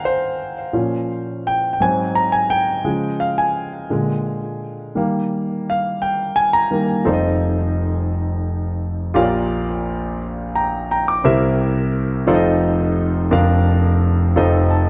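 Gospel in a slow, straight 6/8 at 57 BPM counted in dotted quarters, this soulful, reverent fragment of a longer piece features a solo concert grand piano, deep-bassed, polished and up front with short sustain and tape echo in a large studio reverb, moving from Ab through Bbm, Db and Eb before shifting at 7.1 s to a second section built on F7, Bb6 and C7, with piano fills at 10.2 s and 14.4 s.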